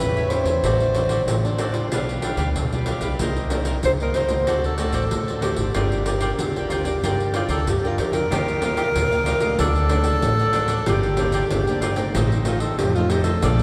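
A breathy alto saxophone leads this samba and choro excerpt, carrying a clear, jazz-style solo melody with light vibrato over a fingerpicked nylon-string guitar, a woody, thumpy pizzicato upright bass sitting up front, and a jingly pandeiro played with soft hands. A bright, crisp picked cavaquinho joins at 0.2 seconds, adding a high sparkle above the small, warm guitar. The mood is nostalgic and yearning, with the harmony moving through dominant and minor-ninth colours before settling on a minor chord. At 8.3 seconds a second section begins, shifting to a lusher added-ninth chord and closing on a diminished one as the piece is cut off. The whole ensemble sounds as if captured in a church or concert hall, wrapped in a long cathedral reverb that lends the pandeiro's band-limited, vintage tone and the saxophone's breath a distant glow.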